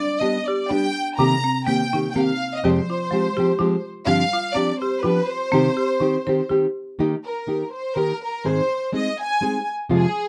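A swung 3/4 lilt at 124 BPM carries this proud, romantic mariachi folk fragment in C minor, where a smooth, lightly vibrato violin section sings the melody up front, a dark, fingerpicked nylon-string guitar with audible finger squeak accompanies from 0.2 s, and a dry, woody marimba struck with hard mallets plays arpeggios until 6.6 s, just before the music turns to Eb major at 7.0 s, set in light reverb with close, detailed miking.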